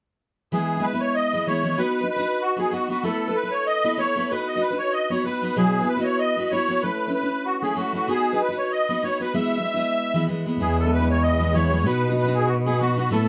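Cheerful and bright, this Celtic folk reel moves with a gentle swing in a brisk four, led by a reedy, shimmering musette accordion carrying the melody up front over a full-bodied picked dreadnought guitar. At 10.6 seconds a muted cello enters on the bass line, played con sordino by one player, its bowed tone dark and veiled, with vibrato and a soft attack, as the opening section repeats. A moderate studio reverb gives the short cut from a longer piece a natural sense of space.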